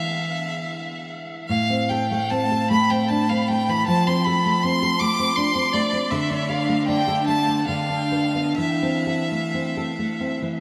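Melancholic and elegiac, this romantic duo for violin and classical guitar moves in a rubato 3/4 between 62 and 82 BPM in A minor, a brief fragment cut from a longer piece. A single bowed violin carries the melody with smooth, even vibrato, its rich tone touched by a diffuse ambient delay. Underneath, the thumb-plucked nylon-string guitar gives a full-bodied accompaniment with audible finger squeak, moving from E through Am, F, D5 and Bdim/D to Am/E, all inside a dreamy, reverb-soaked space with a huge 7.4-second tail.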